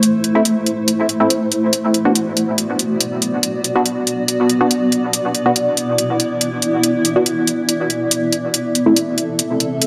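Deep dubstep in a cavernous, heavy half-time feel, cut from a longer piece and set in a wet echo-chamber space. Up front, a cloudy, detuned granular pad holds evolving sustained chords that move from A minor to B minor, alongside layered electronic hi-hats with a warm, small-room character. From 0.4 seconds, muted sawtooth dub chord stabs with a fast attack and a decaying filter pluck play through subtle chorus and dub echo.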